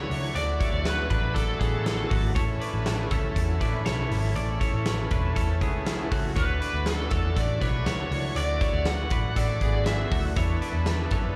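Jangly indie pop at 120 BPM with a youthful, nostalgic mood, heard as a short cut from a longer live club performance through the venue's PA, where a bright, compressed twelve-string electric guitar rings out arpeggios with spring reverb and echo over a buzzy combo organ with light vibrato and a barely audible, slightly broken-up rhythm guitar through a small old amp. A round, foam-muted bass joins a big, punchy rock kit with a fat snare that sits up front, moving through Dadd9, A and E7sus4. A dark, distorted bluesy lead guitar with slapback and tape echo plays melody from 0.0 to 2.2 seconds and returns at 6.4 seconds, while a lush, distant violin section adds a very quiet second line in between and again at the close.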